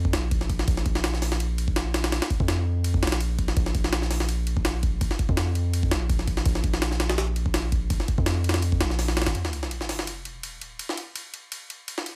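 A digital ambience surrounds this frenetic, nostalgic drum and bass cut, taken from a longer jungle piece at 166 BPM with a light swing on the sixteenths. Up front, a gritty, compressed, pitched-up sampler-style kit pairs a thumpy kick and high-tuned snare with hi-hat and ride in a studio ambience, over a deep, sine-toned 808-style bass whose long, tube-saturated notes strike fast and decay. The bass stops at 9.3 seconds as an electronic sub drop enters, and an impact marks a shift at 9.4 seconds, while the drums run on until 12.2 seconds.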